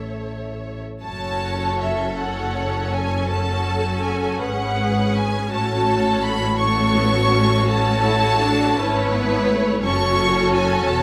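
A lush violin section sits up front carrying the melody high in its range, its tone smooth and even with vibrato. This is a slow, lyrical and serene romantic movement for string orchestra in F# minor, moving in a rubato 12/8 at around 45-59 beats per minute and cut from a longer piece. Beneath the melody, a second violin section traces a focused, more distant line, while the violas supply a clear accompaniment and the double basses anchor the harmony with a rich, bowed tone. The cellos join at 1.0 seconds, adding a smooth-topped bass line as the music settles from an A chord onto F# minor, later shifting to F# minor over A at 5.5 seconds. A generous, wet reverb from a large studio gives the ensemble a spacious, enveloping sound.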